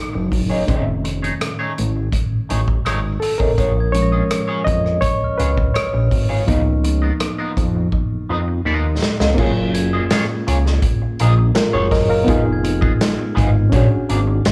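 Lush 1970s-style soul at 83 BPM in 4/4 with a straight feel, this romantic excerpt sits in F# major with chords moving from F#6/9 through altered dominants, reaching F#maj9 as the second section opens. A reedy, barky electric piano carries the accompaniment and takes a solo for the first 9.4 seconds, lightly overdriven and shimmering with fast tremolo through its built-in speakers. An electric guitar at the edge of break-up plays a twangy, fingered riff through wah and tube saturation, while a fat, detuned analog bass with a filter sweep and fast attack sits up front. A vintage acoustic kit with dark cymbals, a medium-tuned snare and a punchy kick plays a drum fill from 7.9 to 9.4 seconds before the second section begins. From 3.6 seconds a glockenspiel struck with soft plastic mallets adds bell-like, ringing tones in the background, all set in a small room ambience.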